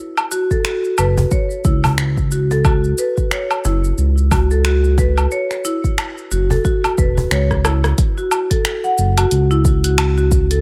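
Hard-mallet marimba arpeggios, dark and up front with delay, carry this mystical, meditative organic downtempo excerpt at 90 BPM in F# minor with a swung 16th feel. Beneath them sit a smooth sawtooth-and-square synth bass with ring modulation that enters at 1.0 s, a deep, tape-warm electronic kick, and a small-room deep house kit of finger snaps, hi-hat, rim click, shaker and woodblock. A snappy, close cajon played with soft hands drops out at 8.0 s after a drum fill at 7.5 s, and everything sits inside a digital ambience.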